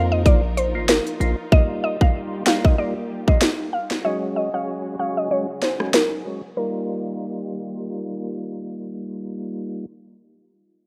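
Overdriven, up-front electronic drums with a tight kick, sharp snare, smooth hats and rim clicks drive this sunny, summery dancehall excerpt at 95 BPM in Eb major from 0.3 seconds, entering over parts already sounding from the start: a punchy 808-style bass that drops out after 1.3 seconds, a barely audible downlifter, a woody, round, chorused mallet-like synth pluck carrying the melody, a fat tonewheel organ with key click and slow rotary swirl pumping under the sidechain, and lush bowed strings in the background, all in a dry, rough home-demo mix with a filter sweep across the first 6.6 seconds.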